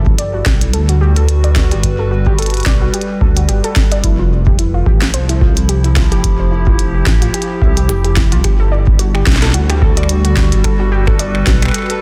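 A warbling, lo-fi pluck spins arpeggios with chorus and tape echo over a nostalgic, mellow pad carrying chorus and phaser in this wistful, playful IDM excerpt at 109 BPM in G major with lightly swung sixteenths, where a dark, rumbling detuned saw bass and a deep, tape-warm electronic kick stand forward beside a glitchy kit of finger snaps, clicky hats and a tiny snare, as the harmony moves from Gmaj9 to Fmaj9 at 4.0 seconds and back at 8.4 seconds under a dense, heavily limited master.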